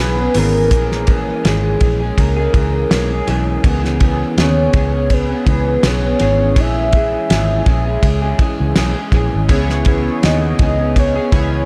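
Lonely and mellow, this echo-heavy bedroom-pop fragment with a gentle swing pairs a soft, round octave-layered synth lead, coloured by phaser, chorus and tape echo, with a slightly broken-up electric guitar through a small old amp, a dark, foam-muted fingered bass and an up-front, cloth-damped drum kit with a fat snare and dark cymbals, while glossy, chorused retro synth keys slip in at 9.5 s over the drift between C#m7 and A#m7b5 in a small, lightly reverberant room.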